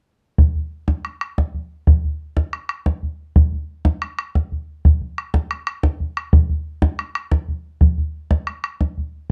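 The recording has a close, up-front sound with a touch of light reverb around it, giving the drum a sense of space while keeping it near. This short piece of Celtic folk is cut from a longer work and carries a lively, bright mood. A bodhran carries the music as percussion from 0.4 to 9.0 seconds, its tone open and boomy with a natural acoustic character. The pulse sits at 121 beats per minute, counted in dotted quarters, in a 9/8 metre with a straight feel. The whole passage forms a single section, giving a brief, spirited taste of the piece.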